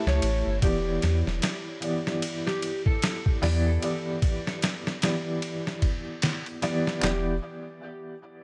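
Set in a digital ambience, this melancholic, cinematic trip hop excerpt opens with a very quiet bowed string section floating over an A7 chord for only the first 0.6 seconds, alongside a felt-muted upright piano with audible action noise, tremolo and tape echo that carries the accompaniment on into Em7, while a dark, slightly broken-up electric slide guitar sings the melody through its own tape echo, a deep, round dub sub bass sits up front, and a gritty, pitched-down boom bap sampler-style kit of thumpy kick, snare, hi-hat, ride cymbal and handclaps swings in a small room reverb.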